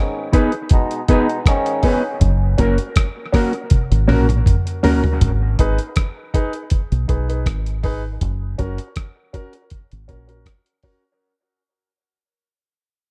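Dub reggae at 80 BPM in G# minor, spacious and hypnotic, cut from a longer piece that moves between G#m and F#. A soft, veiled cup-muted trombone section with light vibrato opens through dub echo, joined by a dark, clean fingered electric guitar and grand piano stabs, both echoed too, while a gritty, compressed sampler-style drum kit with a thumpy kick, rim click, hi-hat and toms sits up front and plays a fill from 3.7 s. A round, punchy fingered electric bass enters at 2.2 s, and the mix, set in light reverb and digital ambience, fades out from 5.2 s.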